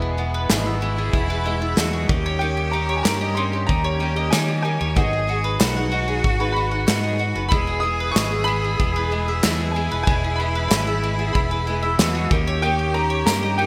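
A straight 4/4 pulse arrives at 0.5 s, when a punchy natural drum kit with gated reverb enters alongside very quiet group handclaps and a jingly tambourine, giving this uplifting indie folk excerpt its lift over a round, up-front fingered electric bass. A woody upright piano carries the melody through analog chorus and digital delay, with a smooth, distant bowed cello tracing a second line with vibrato, while a boxy old ladder-braced acoustic guitar, picked and bathed in lush chorus, and a double-strung bowl-back mandolin playing arpeggios fill in the accompaniment. A very quiet classical-style brass ensemble holds sustained chords beneath it all, and the bright 1980s-style digital production sits in light reverb and small room ambience, with a warm, building feel.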